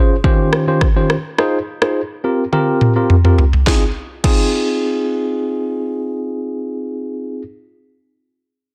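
Afrobeats in F minor at 105 BPM, mellow and sultry, this short excerpt opens on a clean tine electric piano played through its built-in speakers, sitting up front with chords moving from Eb13 to Fm7 and C7sus4 before settling back on Fm7 at 3.7 seconds. An electronic, produced afro-pop drum kit with a deep kick, sharp snare, rim click, toms and crash cymbal carries vintage 12-bit sampler grit, dropping in a fill from 2.5 seconds and stopping at 4.4 seconds while the piano carries on to 7.4 seconds. Light reverb and a dense, heavily limited modern master keep the sound close and full.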